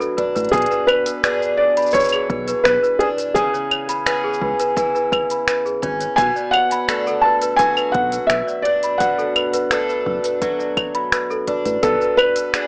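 A small-speaker sound with light reverb frames this wistful, autumnal folktronica excerpt in B dorian at 85 BPM, where a soft, felt-muted upright piano carries the melody up front with tape echo over shimmering, octave-doubled arpeggios from a bright, picked twelve-string acoustic guitar. A delicate, bell-like worn celesta, slightly out of tune and coloured by vintage 12-bit sampler grit and tape echo, plays a second line. Underneath, an overdriven electronic kit of claves, finger snaps, smooth hi-hat and shaker plays from the start, a deep overdriven kick joins at 0.2 seconds, and a round, dark fingered electric bass enters at 0.4 seconds, as the chords move from Bm7 through E7/B and C#m7 and back.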